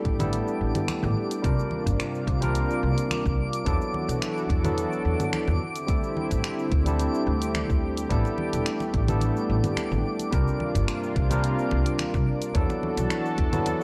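A barky, lightly overdriven tine electric piano with analog delay, a lush, warbling unison pad drifting through sus-chord changes and a woody, growly pizzicato upright bass all open this smooth sunset chillout excerpt together. Within the first second, a layered electronic kick, a deep house kit of cabasa, finger snaps and dark hi-hats, and quiet, bright, close congas settle into a gently swung groove, while a twinkling granular texture with octave-up shimmer sparkles quietly in the background. The excerpt has a dry, gritty hardware-and-cassette character set in a digital ambience.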